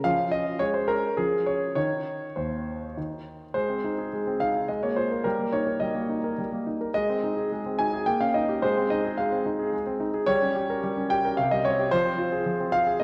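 A worn, warbling cassette-tape sound hangs over this short recording, its pitch drifting unsteadily beneath a wet reverb that suggests a large scoring stage. Within that haze sits a solo concert grand piano, clear and natural, placed up front with a deep bass and short sustain, ranging from Eb2 up to Ab5. The music is a classical-period sonatina in Ab major and 3/4 time, moving at roughly 99-111 BPM with a rubato feel that lets the pulse breathe. Its mood is dramatic and serious. After an opening phrase on Db/F gives way to a pause in the harmony at 1.8 seconds, a new section settles onto Ab at 3.6 seconds and passes through Eb7/Bb and Gdim before closing on Fm near 11.9 seconds. Cut from a longer piece, the passage ends mid-thought at 13.0 seconds.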